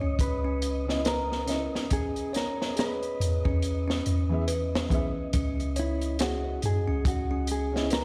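Heard through a big sound system in a bare stone room, this dark, cinematic trip hop excerpt moves at 70 BPM with a swung 16th feel in C# dorian, its harmony passing from C#madd9 to E and on to C#sus2. A mellow, clean electric guitar carries the melody through tape echo over delicate, slightly out-of-tune music-box arpeggios with vintage 12-bit sampler grit, while a round, deep 808-style bass sits up front and a breathy, wind-like tuned noise hovers in the background. At 0.2 seconds a crunchy, saturated breakbeat kit with a tight kick and high-tuned snare arrives, and from 0.9 seconds a felt-muted upright piano, intimate and showing audible action noise, adds accompaniment through tremolo and tape echo.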